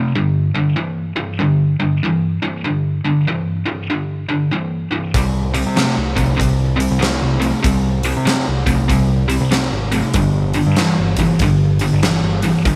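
Swinging at 96 BPM in 4/4, this raunchy, swaggering blues rock and southern rock excerpt opens with a bright, double-tracked distorted electric guitar riff on a G5 power chord alone until 5.1 seconds, when a growling, overdriven picked electric bass and a huge arena drum kit with a fat snare, punchy kick and hi-hat in a pumping hall join in a small room ambience as the harmony shifts to C5 before returning to G5.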